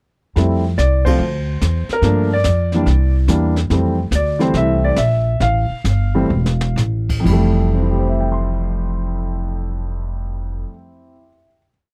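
A natural-toned grand piano leads this short, playful and sophisticated swinging jazz piano trio piece with a motif-based melody in sentence phrases over syncopated comping in rootless voicings, joined by a woody pizzicato upright bass walking up front and a brushed drum kit with snare sweeps, dark cymbals and a boomy kick, all captured in a dry, close 1970s-style studio sound as the band accents an early beat, slows from 3.7 seconds through a brief drum fill, and settles on a final chord at 7.2 seconds that the piano holds until 11.7 seconds.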